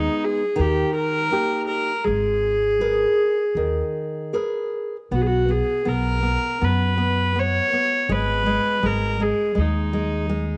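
Mournful and longing, this short excerpt from a longer fado-style ballad moves at 81 BPM in 4/4 with a rubato feel, beginning in G# minor and turning to B major at 5.1 seconds. A single bowed viola carries the melody up front, its gut-string tone reedy and period in style, ranging from D#4 to C#5. Beneath it, a classical nylon-string guitar is fingerpicked with bright, fresh strings, supplying the accompaniment from D#3 to B4. An upright bass, also up front, plays pizzicato with a woody, steel-string sound, holding the low end between G#1 and F#2 until 10.5 seconds. The harmony passes through G#m, D# and G#madd9 before settling on B5 and returning to G#m at 8.1 seconds, all set in a small room with light reverb.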